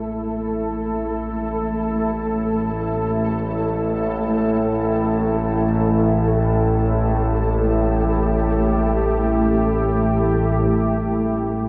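Vast and ominous, this dark ambient drone drifts in free time, cut from a longer piece and washed in a huge, wet reverb. A deep, detuned pad holds sustained chords up front while a warbling, vintage analog drone sits beneath, both colored with chorus, and the drone fades in alongside a flickering, grainy texture set lower in the mix. The texture drops away at 10.7 seconds, leaving the pad and drone to sound on until 11.7 seconds.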